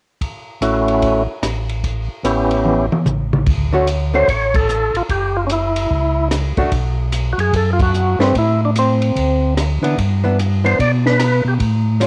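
A swung 148 BPM groove in 4/4 drives this greasy, bluesy soul jazz organ trio excerpt in D major, with a compact cocktail kit of punchy kick, high-tuned snare, rim clicks, toms and dark cymbals playing a fill from 2.6 to 3.5 seconds before the band accents at 4.5 and 7.7 seconds. A percussive tonewheel organ with key click and a slow rotary speaker carries the melody up front, while a round, mellow second organ voice with chorus vibrato and a stopped rotary handles the bass line. A clean, compressed hollow-body archtop guitar joins the accompaniment at 3.7 seconds, and the whole home cassette recording sits in a small room with moderate spring reverb.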